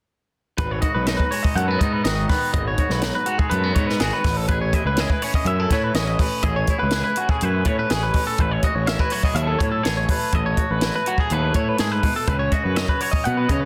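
Intricate and wistful, this math rock and midwest emo fragment at 123 BPM in A lydian pairs a bright, slightly broken-up guitar through a small old amp, picking arpeggios with spring reverb and slapback echo, with a clean, twangy electric guitar accompaniment, a dark, round, overdriven fuzz bass that sits punchy and up front, and a dry, natural cocktail drum kit with a high-tuned snare, all moving from G#m7 to Amaj9 and on to C#7sus4 at 12.3 seconds under a dense, heavily limited master.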